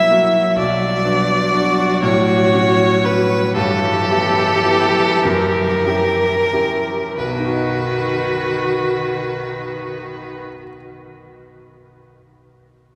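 A warm, up-front violin carries the yearning melody of this slow, solemn romantic movement for piano quartet, its bowed line expressive with vibrato, portamento and a soft attack, while a distant, rich viola and a smooth, even cello fill in beneath it in a rubato 6/8 that slows through the opening section. An intimate grand piano, close enough that its action noise can be heard, supports the strings and sounds on alone after the strings stop at 10.4 seconds, ringing until 13.0 seconds. The whole excerpt is bathed in the long, cathedral-like reverberation of a church or concert hall, and the harmony moves from B minor toward a resolution on B major at 7.2 seconds.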